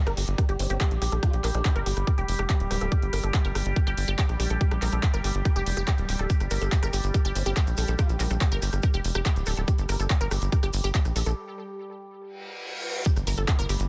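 An overdriven, up-front electronic kick drives this hypnotic psychedelic trance excerpt alongside a tight, punchy sawtooth sequencer bass with tube saturation and a drum kit of bright hi-hats, handclaps and rim clicks in a small room. A lush, detuned unison pluck riff with tape echo and a moving notch rides over a resonant drone whose overtones shift under chorus, phaser and sidechain pumping, while a wobbling formant-filtered bass flickers in the background and grainy maracas arrive at 6.3 seconds. A filter sweep on the synth arpeggio runs into a break, where a reverse cymbal rises at 12.4 seconds and an electronic impact lands at 13.1 seconds in a dense, heavily limited mix.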